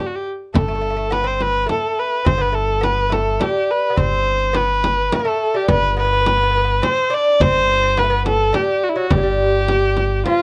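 A light reverb surrounds this short excerpt of Persian modal ensemble music in G dastgah mahur, moving at 105 BPM in a straight 3/4 with a longing, melancholic mood. A warm, boxy bowed kamancheh sits up front and opens the piece alone, carrying the melody with vibrato and portamento in a smooth, even line between E4 and D5. From 0.5 seconds a delicate fingerpicked lute with nylon double strings plays a second line beneath it, joined by a woody, thumpy pizzicato upright bass holding G1 and, at 0.6 seconds, a deep, close and dry frame drum struck with hard hands.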